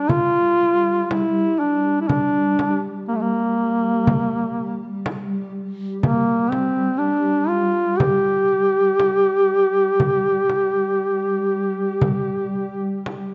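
The recording has a dark, warm sound with light reverb, and its top end is rolled off above 7.9 kHz. This short excerpt of a Caucasian folk lament moves at 60 BPM in 4/4, though the rubato feel lets the phrases breathe freely. It sits in G dorian, tuned to A4 = 438 Hz, and carries a longing, solemn mood. A mellow duduk leads up front as the solo voice, singing between A3 and G4 with vibrato, a soft attack, scooped notes and a smooth top, in a folk style, until 13.1 seconds. Beneath it, a shimmering, ethereal ambient pad holds a detuned sine drone on G3, with an octave-up shimmer, granular texture, a moving notch, chorus and its own reverb, sustaining with a slow attack and a long release. A small, bright acoustic frame drum enters at 0.1 seconds, played with soft hands and heard close, dry and up front.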